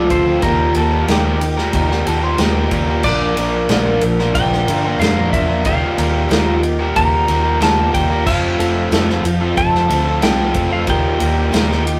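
Hopeful and warm, this short cut from a longer folk rock and heartland rock piece moves at 92 BPM in a straight 4/4, circling through Ebadd9, Bb and F chords. A twangy, bright lap steel carries the melody up high, while a shimmering, octave-doubled twelve-string acoustic guitar supplies picked accompaniment with a boxy parlour character. Sitting up front, a crunchy overdriven guitar, double-tracked, drives a riff, and a dark, round, foam-muted electric bass holds down the low end with punchy fingered notes. A natural country drum kit with a punchy kick, medium-tuned snare, ride and crash comes in at 0.1 seconds and sounds like it was played in a small room. A clean electric guitar with phaser adds a brief second line from 1.8 to 2.7 seconds, and the whole mix has the rough, tube-saturated feel of a rehearsal-room recording with moderate reverb.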